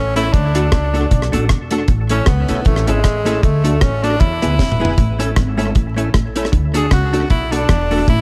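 A clear tenor saxophone carries the melody as a solo across this upbeat, joyful ska excerpt, its light vibrato and pop-style phrasing trailed by tape echo. Underneath, a woody, thumpy upright bass with gut strings sits low, and a deep reggae drum kit sounds dry and up front, with a high-tuned snare, tight kick, rim click, hi-hat and toms. A clean, compressed hollow-body archtop guitar adds dark picked accompaniment, while a percussive tonewheel organ sits in the background with stabs coloured by key click, light overdrive, chorus vibrato, a slow rotary speaker and tape echo. The tempo is 155 BPM in 4/4 with a gentle swing on the eighths, and the chords move through D, A and E. After a drum fill at 4.6 seconds, a slightly broken-up, twangy electric guitar enters at 5.0 seconds with a low picked riff in the background, while vinyl crackle and a small, lightly reverberant room frame the whole band.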